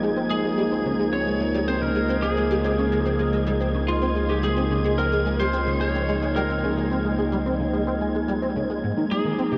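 This luminous, expansive ambient excerpt opens on a sweeping resonant pad holding sustained chords, its detuned sawtooth tone warbling and swelling through a chorus, over a low analog drone thickened by pulse-width modulation. A punchy, funky analog bass riff runs beneath from the start, its filter-plucked notes decaying into ensemble chorus and tape echo. High above, a dark, breathy wind-like noise texture drifts in its own reverb. At 0.3 seconds a lightly driven lead guitar enters up front with a bright, twangy, slightly broken-up melody trailed by tape echo. The harmony moves from Db6 to Abmaj7 at 8.8 seconds, and the whole mix sits in a huge reverb with the worn, wobbling pitch drift of old cassette tape.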